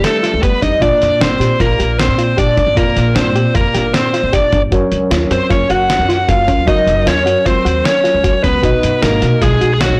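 Opening at once with a biting, picked lead guitar carrying the melody up front through overdrive, joined by a warm alto saxophone second line with vibrato and scooped notes, a tine electric piano shimmering with medium tremolo through a combo amp, a soft round pluck arpeggiating darkly in the background with chorus, phaser and slapback echo, and a dusty, compressed sampler-style drum kit with a thumpy kick and fat snare, this driving, bright progressive instrumental in 5/4 at 154 BPM adds a woody pizzicato upright bass at 0.3 s and moves through G, Bb, Gb and B in a blown-out, overdriven recording with light reverb.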